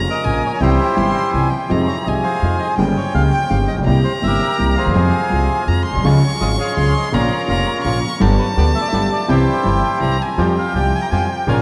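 In a loose, rubato three-beat sway, this sultry, tense tango fragment sets a smooth, reedy bandoneon melody over a vintage grand piano with audible action noise, woody pizzicato upright bass and a single bowed violin singing a high second line with vibrato and portamento, while a second, dry and very quiet bandoneon adds stabs from 6.0 seconds, the whole ensemble hanging in a vast, echoing cathedral space.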